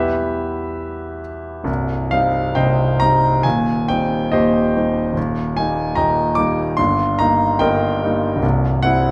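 Brooding and bittersweet, this romantic character piece for solo piano unfolds in a slow, rubato 2/4, its short span cut from a longer work. A clear, polished concert grand sits up front and intimate, reaching from deep bass to the upper register, with long sustain and audible action noise that bring the instrument close. Moderate recital-hall reverb surrounds it as the harmony shifts from an E minor opening toward C minor at 1.7 seconds, drifts through E-flat, and settles on C major at 8.4 seconds.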